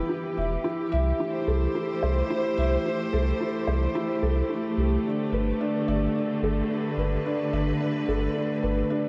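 Intimate and hypnotic, this short passage cut from a longer piece of piano and strings electronica moves in a straight 4/4 pulse. A felt-muted upright piano plays a riff up front, its tone dark and mellow with a thick, vintage softness, and a tape echo trails each phrase. Beneath it, a rich studio string section holds sustained bowed chords with vibrato, smooth and even as an ensemble. A deep, round sub bass enters at 0.4 seconds, its sine-like notes striking quickly and then sustaining under the harmony. The chords move from E minor to C6 and settle on Gadd9 at 5.0 seconds, all wrapped in a lush hall reverb that leaves the mix dreamy and soaked.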